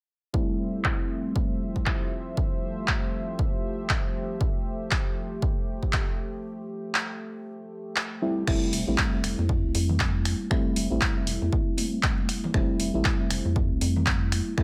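A relaxed, sunny deep house groove at 118 BPM in F major opens at 0.3 seconds with a smooth, detuned analog pad holding sustained chords with chorus, sidechain pumping and vintage 12-bit sampler grit. Alongside it come round, full-bodied FM electric piano stabs, filtered with delay and pumping, and a punchy, up-front electronic kick. A swung analog drum machine soon adds crash cymbal, finger snaps, handclaps and hi-hat, its cymbals and hats dulled by a low-pass filter. After a break, the pad falls away at 8.5 seconds as a rubbery, bouncy square bass enters with its own pumping, joined at 9.4 seconds by very quiet, bright congas, all set in light digital ambience.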